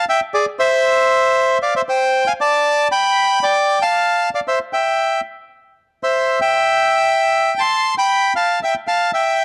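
Passionate and melancholic, this brief tango excerpt in C major at 116 BPM in a loose rubato 4/4 features a lone bandoneon, reedy, bright and close-miked, playing up front between Ab4 and C6 over chords moving from Fm to Gadd9, C and Emadd11, while a moderate spring reverb, small room ambience and cassette tape character colour the recording.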